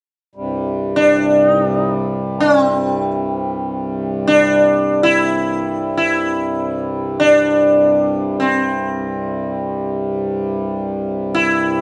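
A buzzing, shimmering sitar carries the melody up front, its plucked tones ringing with sympathetic strings and a touch of slapback echo. This Indian classical piece unfolds in free time, tuned to A4 = 443 Hz, with a devotional, serene mood. A reedy, breathing hand-pumped harmonium sounds a low drone from 0.4 seconds before the sitar enters at 1.0 seconds, all captured dry in an outdoor setting with a softened top end, as a short section cut from a longer performance.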